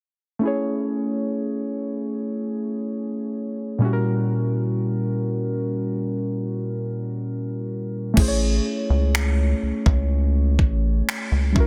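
Contemporary R&B at a slow 62 BPM in A major, smooth and tender, this short cut opens at 0.4 seconds with muted, felt-like synth keys playing alone, their chorus-tinged, warbling vintage tone moving from Amaj7 to F#7b9/A# under light reverb. At 8.2 seconds a rubbery, nasal square-wave bass and an electronic drum kit arrive together, the kit bringing a knocking kick, finger snaps, crash cymbal and a softly clipped snare as the harmony returns to Amaj7. The dense, heavily limited master keeps all three parts up front until 11.7 seconds.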